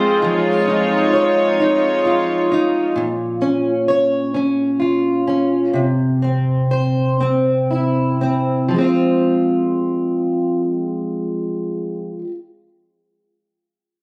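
A fingerpicked, plugged-in steel-string acoustic guitar and a bowed string section open this melancholic, dramatic pop fragment together in a straight 6/8. The strings, reedy with a gut-string tone, light vibrato and a period-style character, hold sustained chords up front before stopping at 2.9 seconds. The double-tracked jumbo guitar, full-bodied and close, then carries the accompaniment alone through the rest of the clip. The harmony moves from Dbadd9/F through Bbm to C while the pace slows down between 3.0 and 8.7 seconds, and a new passage settles on Fm at 8.7. Captured on a phone in the room with compression, light reverb and studio ambience, this excerpt is cut from a longer piece.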